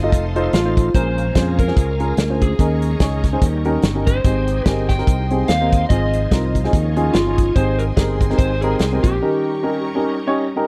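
A slightly broken-up slide guitar sings a soulful, hopeful melody from 0.5 seconds over a swung 145 BPM uptempo gospel groove in Ab major, driven by a tight, dry soul drum kit, a growly, bright fingered bass and a dark, intimate baby grand piano up front, with a shouting tonewheel organ with key click and slow rotary speaker and veiled, muted strings in the background, all in a close 1970s-style studio sound, before the bass and drums drop out for a short break at 9.2 seconds in this cut from a longer piece.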